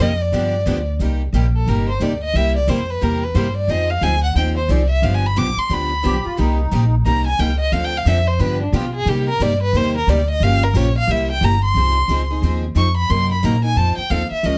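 A dark, woody bowed violin with vibrato sings up front over two bright picked steel-string acoustic guitars and a growly, thumpy pizzicato upright bass in this swinging, bittersweet C minor gypsy-jazz excerpt at 179 BPM, the violin taking a solo from 1.0 s while a sweet, reedy accordion with light tremolo tuning and slapback echo slips in briefly at 6.1 s, all in light reverb.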